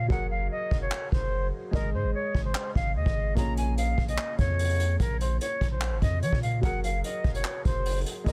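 This dark, menacing hip hop and trap excerpt moves at 147 BPM in 4/4 with a half-time feel, opening on a break that runs to 3.4 seconds. A reedy, airy silver concert flute carries the melody up front between Bb4 and Bb5, its straight, tongued tone softened by a low-pass filter and trailed by delay. Beneath it, a dark baby grand piano plays accompaniment that sounds worn and boxy, with audible action noise and a muffling low-pass filter. A long, deep 808-style bass with a sine tone, fast attack and mellow decay anchors the low end from Gb1 to F3. A vintage brush drum kit joins at 0.1 seconds with handclaps, hi-hat and a tight kick, sounding acoustic and up front with a rolled-off top and a pumping small room. The harmony moves from Gbadd9 through Ab5 and Bbm7 before returning to Gbadd9, all set in a small room reverb and a dense, heavily limited modern master.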